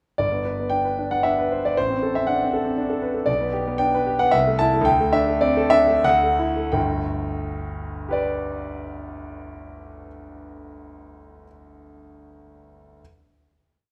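A bright concert grand piano carries this short romantic character piece alone, its single-line melody set over rippling figuration that reaches down into a deep bass register. The mood is lyrical and passionate, shaped by a free rubato in a three-beat metre. The piano sits up front with a smooth, slightly vintage tone, and a moderate recital-hall reverb gives it an airy halo. The harmony moves through a brief, song-like progression, and the playing slows from 2.5 seconds until the phrase settles onto a final chord at 6.8 seconds, which rings on until 10.8 seconds. This is a complete miniature, over almost as soon as its tender idea has been stated.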